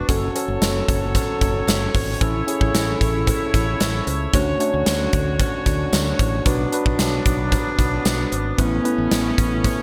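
1980s-style pop in A major at 113 BPM, this brief cut from a longer piece feels uplifting and romantic, moving through F#m, A, Dmaj7 and Bm before settling on Aadd9 at 8.6 seconds. A mellow tine electric piano carries the accompaniment with a clean, direct tone and a subtle chorus, while a clear woodwind section holds sustained chords alongside it, close-miked and tight with a light vibrato in a classical style. A fingered electric bass sits low with a warm, direct and amped sound. The gated 80s drum kit is the most forward element, with a punchy kick, a medium-tuned snare, hi-hat and tambourine in an airy, big gated room, and a very quiet, dry cowbell adds a metallic glint in the background. The whole is set in a moderate plate reverb with bright 1980s-style digital production.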